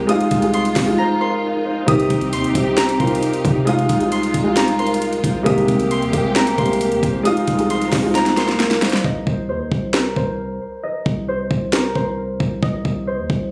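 Captured on a phone in the room, this fragment has a light studio reverb, studio ambience and compression, giving it a hard-hitting feel. It is a dark trap beat in C minor at 134 BPM in a half-time 4/4 feel. A ringing, fingerpicked concert harp carries the melody through a low-pass filter and digital delay, while a hollow, soft clarinet-like synth lead with chorus, vibrato and delay hums a second line in the background. A mellow, intimate baby grand sits up front with audible action noise, and a lush, woody bowed string section holds sustained chords over a Fm7/C, Cm and Abmaj7/C progression. Beneath them, a deep, boomy 808 bass with a fast attack and decaying tail anchors the low end, and an electronic kit with a knocking kick, sharp snare and metallic hats punches through, adding a drum fill before the change. A classical-style brass section jabs short stabs at 1.9 s and 5.5 s, and at 9.0 s the piano, strings and synth lead fall away, leaving harp, bass and drums to close the passage.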